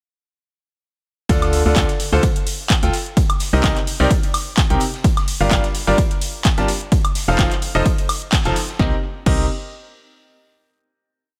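Energetic yet bittersweet, this short piano house piece launches straight into its drop at 1.3 seconds, with a swung sixteenth-note feel in 4/4. A bright concert grand piano sits up front playing a rhythmic chord riff in drop-2 voicings, its brilliant, polished tone carrying audible action noise and deep bass, treated with delay and sidechain pumping. Beneath it, a hollow, organ-like FM bass with a fast attack and decaying tone follows the chord rhythm through Dm, Cm7, Gm7 and F7, pumping along with the piano. An overdriven, layered electronic kick pounds four-on-the-floor, re-recorded in a large room. A punchy analog drum machine adds overdriven claps, snare, hats, a high woodblock and crash, while an oversized low-tuned acoustic kit, gritty and very quiet in a bright stone room, contributes a looped, edited breakbeat of fat snare and hi-hat until 8.8 seconds. After a band accent at 8.3 seconds, the piece settles on a final Cm7 chord, bathed in studio reverb.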